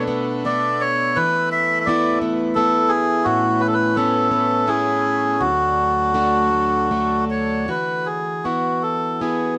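A breathy, nasal melodica carries the melody up front from the start of this pastoral, nostalgic Celtic slow air, over a full-bodied picked steel-string acoustic guitar and a reedy, airy hand-pumped harmonium holding sustained chords in the background. The tune moves in a free, rubato 3/4 at roughly 75-88 BPM in E mixolydian, wandering through Bm7, Esus4, Aadd9 and D with light reverb and a touch of studio ambience. The harmonium drops out at 7.7 seconds, leaving melodica and guitar to settle on an open Esus2 until the melodica stops at 9.5 seconds and the fragment ends at 9.6 seconds.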